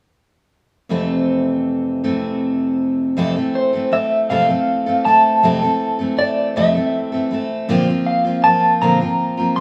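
Nostalgic and peaceful, this acoustic folk fragment from a longer piece moves in a slow, straight 6/8, with a picked steel-string acoustic guitar, a dreadnought with fresh strings, carrying the accompaniment up front from 0.9 seconds, over Fmaj7 and later Bbadd9 chords. At 3.6 seconds a slightly broken-up electric guitar through a small old amp takes the melody high in its range, compressed and close, its tone shimmering with tremolo. The two parts sound like a band playing live in one room, bathed in a wet, large studio reverb.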